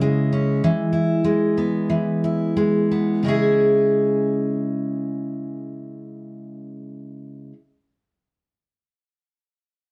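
A dark, warm studio sound with moderate reverb frames this reflective, tender pop fragment in C# minor, where a full-bodied, up-front picked jumbo steel-string acoustic guitar carries the accompaniment for the whole 7.5 seconds in a lightly swung 4/4 at 86-98 BPM, slowing over the first 3.2 seconds as it moves from C#m to E before returning to C#m.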